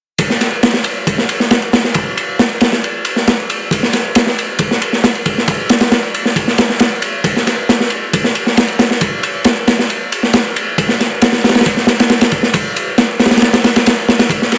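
Swaggering and energetic, this straight-feel breakbeat excerpt is carried entirely by a crunchy acoustic drum kit of kick, snare and ride cymbal, playing from 0.2 to 14.6 seconds. The kit sits up front with a saturated, gritty character, a tight kick, a medium-tuned snare and dark cymbals, and its rolled-off top lends a smooth, dusky tone. High-pass filtering thins the low end of each drum and the small-room ambience, and a light reverb adds a touch of space.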